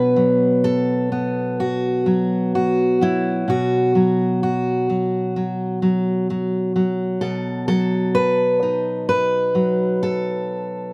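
Recorded outdoors with light reverb, this reflective, haunting folk fragment, cut from a longer piece, features a solo fingerpicked steel-string acoustic guitar with a dark tone, placed up front, drifting in rubato around 64 BPM through Bm, B5 and then B7 at 7.2 seconds over its 10.9 seconds.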